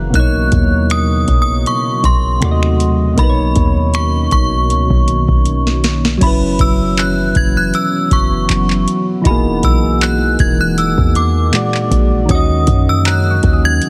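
A booming, dry analog drum machine with a deep kick, crisp snare, metallic hats, finger snaps, handclaps and crash sets a lightly swung 79 BPM groove in this moody, longing contemporary R&B excerpt, up front over a boomy 808-style bass, as soft chorused electric-piano-like keys and a dark, detuned ambient pad with sidechain pumping carry lush chords such as Bmaj9 and Emaj9#11, a ringing, inharmonic FM chime with tape echo sings the melody, a drum fill leads into the second section at 6.2 seconds, and a faint round pluck slips in at 13.1 seconds, all pressed into a heavily compressed, radio-like sound.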